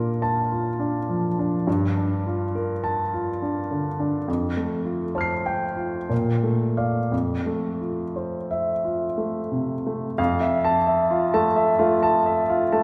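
A wet concert hall reverb with a 2.0-second tail surrounds this short cut from a longer impressionist solo piano piece, heard from further back in the room. A clear, intimate baby grand carries it alone in F major, with audible action noise and long sustain, moving in a serene, dreamy rubato 3/4 at roughly 58-69 BPM across a range from F2 to C7. Chords such as Bbmaj7, Gm9 and Fadd9 drift by before a new passage opens at 10.2 seconds.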